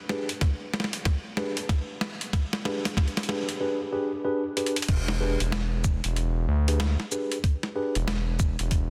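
An aggressive, tube-saturated synth bass drops in at 4.9 s on an E7#9 chord, turning this funky glitch hop excerpt at 94 BPM, with swung 16ths in E minor pentatonic, from a build-up into the drop. A mellow tine electric piano plays stabs with sidechain pumping and tape echo from a G#dim/D opening. Meanwhile a pitched-down, compressed boom bap sampler kit with a high-tuned snare, hi-hat, shaker and crash runs drum fills beside a thumpy electronic kick, both up front in a small room, all set in a lush hall reverb on a dense, heavily limited master.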